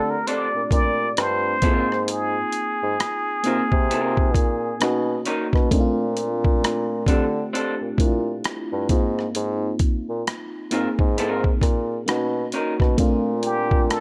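A plunger-muted trumpet leads this soulful, smooth neo-soul and R&B excerpt at 66 BPM in Bb major, its jazz-style wah-wah lines carrying light vibrato and scooped notes before it drops out at 5.3 seconds and returns briefly at 13.5 seconds. Beneath it, a round, dark FM electric piano with chorus moves through Bbmaj9, Ab69 and Bmaj9 over a swung 16th feel, while a mellow bassoon carries the bass up front in a classical style. A slightly broken-up, lo-fi electric guitar adds a picked second line, and a gritty, compressed boom bap sampler-style kit with a thumpy kick, hi-hat and rim click sits forward inside a digital ambience.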